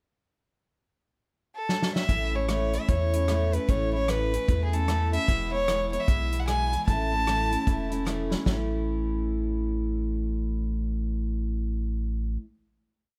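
A clear, focused fiddle with light vibrato and a slapback echo carries a motif-based melody from 1.6 seconds, setting an easygoing, down-home honky-tonk mood in a swung classic country feel. A natural, small-room drum kit with a punchy kick and medium-tuned snare plays a country two groove, while a full-bodied picked dreadnought strums open chord shapes in eighths over a deep, smooth sine sub bass playing root and fifth on the two-beat. After a drum fill at 8.3 seconds, the guitar and bass hold a final chord from 8.5 seconds, ringing out until 12.4 seconds under light reverb.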